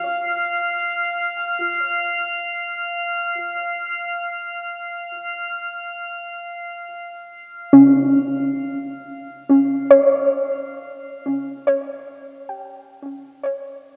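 Floating in free time, this ambient piece, cut from a longer work, feels luminous and peaceful. A soft, round synth pluck carries arpeggios from start to finish, its dark, decaying notes sitting up front with chorus and tape echo. Above it, a glassy texture of drifting overtones swells in slowly and sustains with a bright, calm shimmer, coloured by chorus and its own reverb, before fading out and dropping away at 10.5 seconds. From there the harmony falls away and the pluck carries on alone until 14.0 seconds. A lush hall reverb soaks the whole mix, giving it a dreamy, suspended quality.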